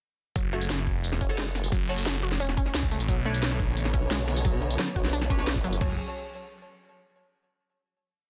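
Dark and aggressive, this brief piece of technical drum and bass drives a straight 4/4 drop from 0.4 seconds, with two layered electronic kits of knocking kick, floor toms, crash, cracking snare, crisp hats and tambourine, a swirling, phased, saturated detuned saw bass, a formant-filtered wobble bass with chorus that changes wobble speed and answers the other bass, lush pumping unison-pluck arpeggios with digital delay, sparse muted dub chord stabs with 12-bit grit, and from 3.1 seconds a distant, bowed chamber string section, before settling on a final F#5 chord at 5.8 seconds under a dense, heavily limited master.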